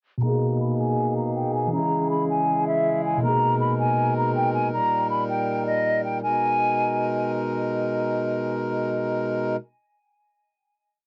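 Recorded at home onto cassette in a small, booth-like room, this short, dark and brooding half-time hip hop piece moves through a filter-swept breakdown before settling on a final chord at 6.2 seconds. An airy, hollow concert flute carries a tongued, vibrato-laden looping melody that repeats like a sample. Beneath it, a mellow tine electric piano plays held, open-voiced chords through its built-in speakers until 4.8 seconds, while a reedy, breathing harmonium, close-miked, dry and full, sustains a pad to the close.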